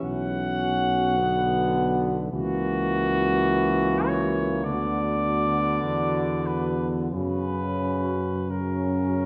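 Moving at a slow, rubato 43-55 BPM in 4/4, this brief classical excerpt is a hymn-like piece for brass band in B minor, yearning and elegiac in mood. A warm, vintage flugelhorn carries the melody up front, ranging from F#4 to F#5, while a mellow French horn section holds a second line on F#4 in the background with light vibrato. Beneath them, a clear, punchy solo trombone with light vibrato and a soft-attacked, distant trombone section supply the accompaniment, and a dark tuba with a smooth top anchors the bass from B1 to F#2, sitting up front alongside the flugelhorn. The harmony moves from Bm through F#7/C# and Bm/D before arriving on F# at 7.1 seconds. All five parts play together throughout the 9.3 seconds, bathed in the reverb of a scoring stage.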